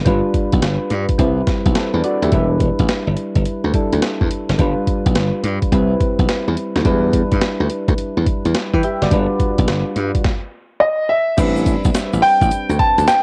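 Slick and punchy, this short new jack swing clip in E minor moves at 106 BPM with a 16th-note swing, as bright, up-front slap bass and a gritty, pitched-down boom bap sampler-style kit with a thumpy kick and high-tuned snare drive under round, mellow electric-piano-like synth keys with chorus, before a clear, open concert grand piano takes the melody at 10.8 seconds and a grainy tube shaker joins in the background at 11.4 seconds over a light, cassette-tinged home-recording ambience.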